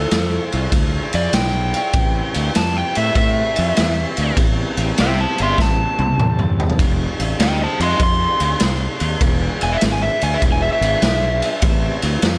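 Brooding and heavy, this swung blues rock and southern rock excerpt puts an overdriven slide guitar solo with slapback echo up top, over growly, punchy fuzz bass, a raw garage drum kit with a boomy kick and gritty, rolled-off cymbals that fills at 5.6 seconds, and a smooth tonewheel organ with key click and slow rotary swirl holding chords in the background, all in a small, lightly reverberant room.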